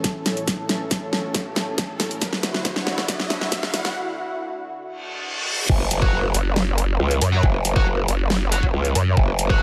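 A growling, saturated growl bass hits at the drop at 5.7 seconds and a nasal, resonant vowel-sweep wobble bass joins at 6.3 seconds in this heavy, menacing half-time wobble dubstep excerpt at 138 BPM in F# minor. Before the drop comes a build-up where a lush, detuned sawtooth pad with sidechain pumping holds A and Dadd9 chords over a knocking electronic kick and a dubstep drum kit with a huge snare and bright hats, while a background riser, reverse cymbal and impact lead into the drop and a distorted, double-tracked fuzz guitar adds delayed stabs from 6.0 seconds over the F#5 power chord.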